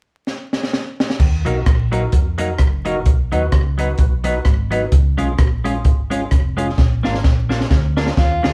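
A swung ska track at 129 BPM in Eb minor opens with a drum fill on a compact cocktail kit with a high-tuned snare and punchy kick. A round hollow-body bass joins at 1.2 seconds, followed moments later by clean, scooped semi-hollow guitar and fat tonewheel organ stabs through a slow rotary speaker and slapback echo. The chords move Ebm, B, Db and Bb in a mischievous, energetic live-room groove with vinyl crackle, until a gritty, overdriven harmonica with tongue slaps bursts in up front at 8.2 seconds.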